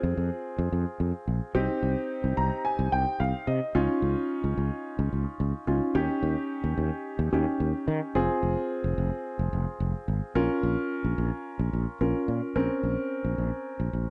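Nocturnal and melancholic, this synth-pop excerpt at 109 BPM in Bb dorian sets an intimate, up-front concert grand piano, with audible action noise and deep lows, playing accompaniment between C4 and Bb5 and adding a fill from 2.1 to 3.8 seconds, over a bright, growly, sustaining fretless electric bass, direct and amped, across chords from Fm to Bbmadd9, all in a dark, warm production wrapped in moderate scoring-stage reverb.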